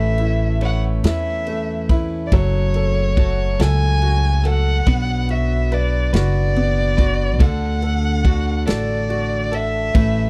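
A dry, close 1970s-style studio sound frames this romantic, heartfelt six-eight pop ballad excerpt, where a dark, distant bowed violin sings the melody with vibrato over a clear baby grand piano with audible action noise, bright compressed electric guitar arpeggios in the background, woody pizzicato upright bass up front, and a punchy natural country drum kit of kick, snare and ride entering at 0.2 seconds, all moving through Aadd9, F#m, Bm and D.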